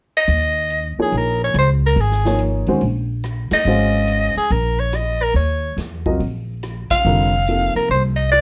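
Searching and cool, this short modal jazz passage swings in four and is cut from a longer piece. A growling soprano saxophone carries the melody up front from 0.2 seconds, its raspy, gritty tone shaped by vibrato and scooped notes with a vintage jazz character. Upright bass enters at 0.3 seconds alongside a big-band drum kit: the pizzicato bass sounds woody and sits forward, while the kit, heard in a big room at a lower level, brings hi-hat, ride cymbal, rim click, a medium-tuned snare and a boomy kick. A warm baby grand piano joins at 1.0 seconds with natural, short-sustain accompaniment as the harmony moves from Eb9sus4 to F9sus4. The full band strikes two shared accents along the way, and light reverb gives the whole a dark, warm production.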